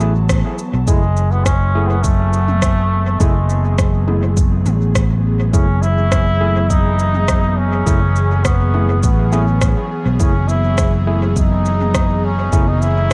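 Spacious and hazy, this ambient dub passage is cut from a longer piece and moves in a straight 4/4 feel. A trombone with a straight mute carries the melody, nasal and distant with vibrato and a roomy, classical touch, its lines fed into dub echo. Beneath it, an airy, breathy pad holds sustained chords, its detuned, warbling tone thickened by chorus, while a gritty, barky tine electric piano places overdriven stabs through echo in the background until 12.6 seconds. The fingered electric bass sits up front with a round, amped tone, and a deep, layered electronic kick joins at 0.3 seconds on a band accent. An overdriven electronic kit adds rim clicks, shaker and toms, soaked in studio reverb and dub echo, and a light reverb ties the mix together.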